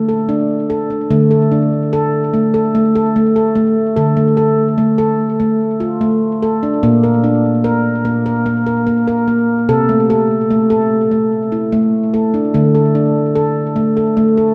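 A solo handpan, ringing, bright and stainless-steel clear with sharp finger strokes and a touch of delay, sits up front in this gentle, meditative world piece in 7/8 at 147 BPM in eighths, tuned to A4 = 441 Hz, moving from D5 to Bb, a chordless stretch at 9.7 seconds and back to D5, all bathed in a cathedral's long 5.3-second reverb and a cassette-tape sheen across this 14.5-second cut from a longer piece.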